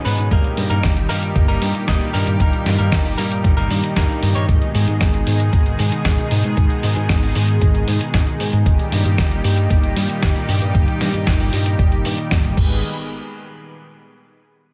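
A thumpy, gritty electronic kick drives this nostalgic, danceable italo disco excerpt at 115 BPM in 4/4, alongside a compressed, tape-warm sampler-style kit of crash, hi-hat and medium-tuned snare that enters just before it, all re-recorded in a large room. A glossy, retro synth bass with pulse-width modulation, filter pluck and chorus grounds the harmony, while a lush, detuned unison pad holds bright, slow-attack chords with chorus across D#/G and G#m. A clean, direct-recorded electric guitar adds picked stabs with delay until 4.5 s, and the whole mix sits in a digital ambience.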